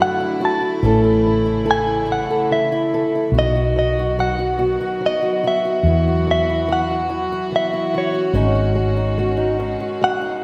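A clean, direct-recorded electric guitar carries the melody up front, its picked, compressed tone shimmering with harmonic tremolo. This short excerpt from a longer acoustic folk-pop ballad moves at 72 BPM in a straight 3/4 in E major, with a hopeful, intimate mood. Beneath it, a fingerpicked acoustic archtop guitar supplies the accompaniment, with audible finger squeak adding a close, human touch. A distant chamber string section floats soft-attack bowed chords in the background, pure and gentle. A woody fretless electric bass enters at 0.8 seconds, dark, round and hollow-bodied, sitting up front until 9.8 seconds. The whole is bathed in a wet recital hall reverb with a church-like bloom, as the harmony drifts from Dadd9/F# through A, B and Esus2 before resting on G#7sus4.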